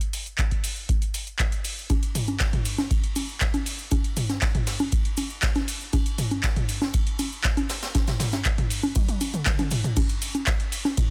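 House groove at 119 BPM, driving and raw, built from an up-front, punchy analog drum machine with congas, handclaps, hi-hat, toms and crash, a deep, tape-warm electronic kick entering at 0.4 seconds, a very quiet, grainy cabasa, and an airy, polished brush kit with dark ride and high-tuned snare joining at 1.9 seconds, all in a small room, with a drum fill at 9.0 seconds leading into a drop at 10.0 seconds in this excerpt from a longer piece.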